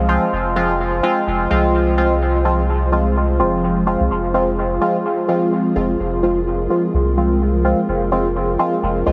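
Dub techno at 127 BPM in F minor, this cavernous, nocturnal excerpt of about 9.1 seconds holds on a single F minor chord with a lightly swung 16th-note feel. Up front, a juicy, detuned, resonant polysynth plays stabs under a filter sweep, colored by chorus, phaser and dub echo, while a round, soft sub bass sits beneath it. Further back, a moody, dark analog pad with a slow attack and long release sustains chords with chorus, all wrapped in a huge ambient reverb and a heavily compressed, radio-like sound.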